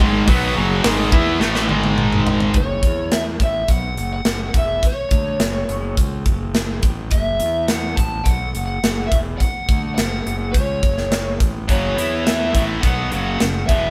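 Recorded as a band playing live in one room with moderate studio reverb, this hard rock excerpt sounds heavy and driving, moving at 105 BPM in a straight 4/4 in F# dorian. It opens with three picked, bright guitar riffs: a compressed distorted guitar and a double-tracked, overdriven sludgy guitar sit in the background, joined by a tight distorted guitar on the same riff. Underneath, a fingered electric bass with a round, punchy fuzz tone holds the low end throughout, and an airy, polished metal drum kit sits up front with a tight kick, a medium-tuned snare, hi-hat and toms, playing a fill that leads into the second section at 2.6 seconds. There the riff guitars drop out and a lead guitar through a small cranked amp takes over with an overdriven melody in a high register. The distorted and tight guitars return at 11.7 seconds, while the chords move mainly between F#m, C#m/E, Esus2 and E5.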